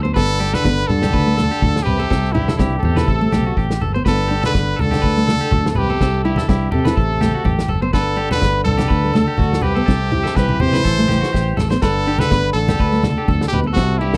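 A fingerpicked nylon-string guitar in the background, a twangy, slightly broken-up electric guitar playing arpeggios with slapback echo, and a round, foam-muted fingered bass open this joyful, carefree highlife excerpt with a light swing. A brilliant, forceful trumpet carries the melody with scooped notes and light vibrato, while a veiled trombone in a bucket mute plays a second line behind it, over a vintage drum kit with a punchy kick and dark cymbals and soft-handed, low-tuned congas heard distantly. A drum fill at 10.9 s leads back into the repeated section before the recording cuts off.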